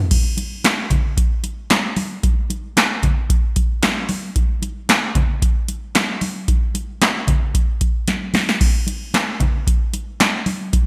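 An up-front analog drum machine with a deep kick, punchy gated-reverb snare, handclaps, metallic hi-hats and crash cymbal drives this late-night, danceable funk fragment at 113 BPM in a straight 4/4, with close, medium-tuned acoustic congas sitting lower in the mix, a drum fill at 8.1 seconds, and light reverb over a bright 1980s-style digital production.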